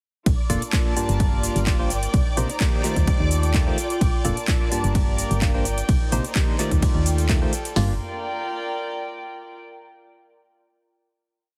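A short, energetic and soulful piano house piece opens straight into its drop at 0.3 seconds, where a punchy analog drum machine drives a four-on-the-floor kick with a tape-warm snare, floor tom and open hats, sitting up front in a small room. Layered over it, an overdriven house drum kit adds metallic programmed hats, claps, shaker and ride in a larger room, while a round, dark FM bass plays a syncopated riff with fast, decaying notes that pump against the kick. From 0.5 seconds a hollow, percussive organ stab carries a rhythmic chord riff, dressed in subtle chorus and tape echo and pumping with the groove. Behind them, a silky, nasal analog string pad holds a high note with ensemble chorus, and a reedy, gut-toned chamber string section bows slowly shifting chords through a loop of Bbmaj7, Gm7, Cm9 and Ebmaj9#11. After 7.8 seconds the groove gives way to a final Gm7, with the chamber strings ringing on until 9.6 seconds, all under light reverb and a heavily compressed, radio-like finish.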